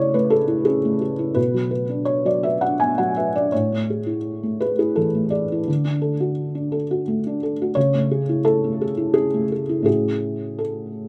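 A felt-muted upright piano opens alone on an Amaj7/C# chord, its thick felt giving a soft, dark tone with the mechanical noise of the action clearly audible. This is neoclassical minimalist piano in A major, moving in a rubato 3/4 at around 85 BPM, with a hopeful, intimate mood. The harmony drifts through Bm, Amaj7 and D before returning to Amaj7/C# and settling on A6 near 9.9 seconds. The piano spans from A2 up to G#5 and sits close and up front, its mellow voice touched by light reverb. Recorded outdoors, the sound is free of any room character, and this 11.1-second cut from a longer piece stays with the solo piano throughout.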